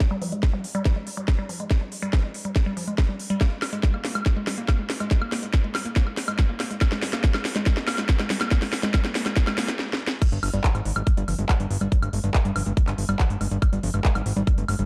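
A woody, wave-folded pluck carries the riff from the start, its short, percussive notes built from triangle, sine and square tones with a noise layer and a sub octave, and treated with chorus, tape echo and sidechain pumping. This intense, alien slice of psychedelic trance moves at 141 BPM in a straight 4/4, opening on an Fmadd9 chord before shifting to G minor. Beneath it, a tight, layered electronic kick sits up front as the loudest part, joined by a techno kit of cracking snare, smooth hi-hats, handclaps, woodblock and crash cymbal with a tape-tinged grain. Drum fills run through the opening build-up, which ends in a brief stop. At 10.2 seconds the drop lands on a G5 chord as a fat, detuned analog bass of sawtooth and square waves enters with a saturated filter pluck. The production is dark with light reverb, and the passage is cut from a longer piece.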